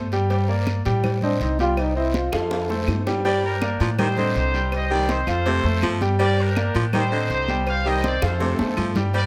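A fiery, driving salsa excerpt opens on a brilliant, up-front grand piano and a woody pizzicato upright bass, joined almost at once by a background bed of high-tuned congas, distant cowbell and bongos, woody claves and a raspy guiro. A dark trombone solo with vibrato and scooped notes sings briefly from 1.2 to 2.7 seconds, then at 3.3 seconds a tight, punchy, vintage trumpet section carries the melody over a gritty, edgy baritone saxophone line. The nearly reverb-free, closely miked sound keeps the whole band vivid and immediate.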